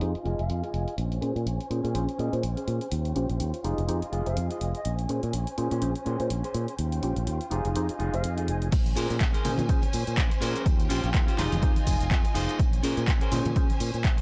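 Funky and nostalgic, this filtered disco house cut rides a filter sweep over a bright, punchy fingered electric bass, a twangy clean electric guitar riff with spring reverb, rich bowed violin chords, a worn, slightly out-of-tune tine electric piano with phaser and sampler grit, and an overdriven analog drum machine with handclaps, hi-hat, shaker and crash, while a reedy concert flute drifts in briefly with analog delay, until the drop at 8.7 s brings in an up-front electronic kick along with tambourine and congas in the background.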